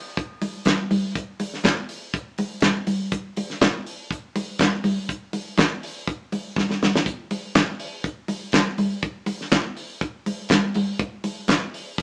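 A dry, acoustic damped 70s drum kit opens at 0.2 s with a tight kick, fat snare, hi-hat and handclaps sitting up front in this driving, danceable disco cut at 122 BPM with a straight 4/4 feel, joined at 0.4 s by close, medium-tuned congas with a thick skin and hard hands, while a drum fill arrives at 6.6 s and the band sounds as if playing live in one room, heard through a small speaker sound and a wet studio reverb.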